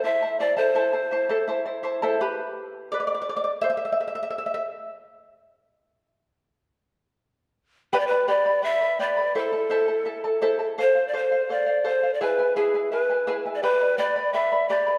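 This Andean folk excerpt moves at 84 BPM in a straight 2/4, with an earthy, festive mood. Large cane pan pipes carry the melody up front, breathy and reedy with vibrato, a crisp chiff on each attack and rolled-off highs. The charango accompanies them, also up front: acoustic and mellow, fingerpicked on double strings, with a shimmer from some octave-doubled strings. The pipes fall away at 1.6 seconds and the charango plays alone until 4.6 seconds; both return at 7.9 seconds over chords moving through G, Am, F and E. A wet scoring-stage reverb wraps the pair in a spacious, lingering ambience.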